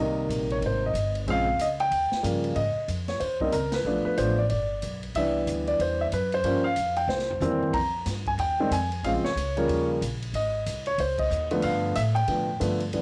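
A present, polished grand piano carries the melody up front in this relaxed, playful jazz trio snippet, cut from a longer piece and swinging at 185 BPM in 4/4, its tone colored by a cassette-tape grain. Beneath it, a woody, growly upright bass played pizzicato on steel strings sits in the low register, giving the harmony a round, earthy floor. A big-band style drum kit joins just after the start, sitting further back in the mix with hi-hat, ride cymbal, a medium-tuned snare, toms and a punchy kick, and it shares that same tape character. The changes move from Abmaj9 through turns like G7 to Cmaj7 and Gm7b5 to C7 before settling back toward Ab, while the band hits accents together at 3.7 seconds and 11.2 seconds, and the drums take a short fill at 7.1 seconds. A moderate spring reverb and a natural studio ambience wrap the trio in a homemade cassette recording with a cozy, intimate feel.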